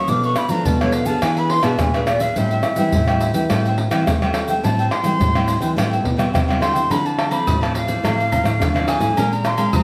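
Nostalgic and lively, this 106 BPM samba-choro fragment in A minor is led by an airy wooden flute with vibrato and a crisp attack, soloing until 6.9 s over chords moving from Bm7b5 through E7 to Am7. A thumb-plucked nylon-string guitar carries the bass, while a second, full-bodied fingerpicked nylon-string guitar with audible finger squeak and a picked cavaquinho sit in the background. Up front, a vintage, band-limited percussion group of egg shaker, tight surdo, pandeiro, tamborim and agogo bells, played with soft hands, drives the groove. Everything is set in a wet, large studio reverb as the harmony shifts to Dm9 at 6.9 s and to Bb9 at 9.2 s.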